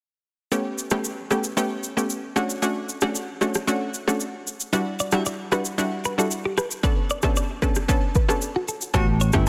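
A round, detuned analog pluck with a fast attack and short decay opens the piece at 0.5 s alongside an electronic afro-pop drum kit, whose deep, overdriven kick, rim click and shaker sit up front. This mellow, sultry afrobeats excerpt moves with a straight feel at 114 BPM over a smooth chord cycle of A9, Dmaj7, Em9 and Bm9. The bright sawtooth pluck carries a shimmer of chorus as it fills out the accompaniment. At 4.7 s a clean, twangy electric guitar, recorded direct and compressed, adds a picked riff coloured by phaser and digital delay. As the progression returns to A9 at 8.9 s, a breathy alto saxophone steps in with a punchy, pop-style phrase touched by vibrato and delay, while a warm picked electric bass lands up front and close, dry agogo bells tap in the background. Light reverb surrounds a dense, heavily limited modern master.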